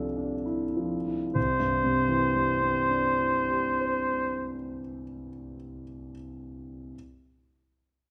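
Dreamy and luminous, this impressionist classical fragment in a rubato 6/8 opens with an intimate concert grand piano, rich in deep bass and audible action noise, slowing over a Dm9/C chord before settling onto Cadd9 at 1.4 seconds, where a clear, vintage-toned oboe enters up front to sing a C5 with vibrato until 4.5 seconds, all bathed in the resonant glow of a recital hall.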